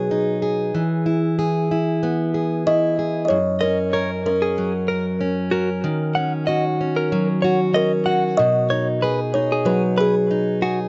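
A lightly swung 94 BPM pop groove in B major sets a sunny, easy-going mood for this short cut, as a fingerpicked plugged-in steel-string acoustic guitar sits up front with concert warmth beneath a woody, ringing kalimba melody, joined at 3.6 seconds by clean, compressed electric guitar arpeggios recorded direct with a slapback echo, all in a dry, outdoor-sounding mix with a soft top end.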